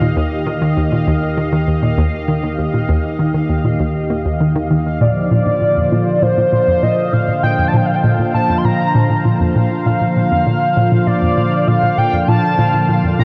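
Drenched in a huge ambient reverb and the warbling pitch drift of worn cassette tape, this expansive, luminous stretch of sequencer-driven space music at 99 BPM in Bb major sets a hollow, bouncy square-wave pluck riff against a sweeping, resonant pad of evolving sustained chords and a faint bubbling texture of random filter steps, before a shimmering, retro pulse-width lead with vibrato carries the melody in from 5.0 seconds as the harmony moves from Eb to Bbadd9.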